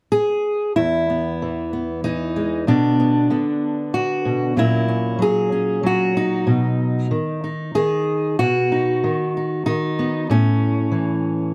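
Closely miked and detailed with light reverb, this peaceful, nostalgic folk excerpt features a solo fingerpicked steel-string acoustic guitar, warm and up front with audible finger squeak, moving in 3/4 at 94 BPM through E, Bm, F#7/A#, B and A in E major.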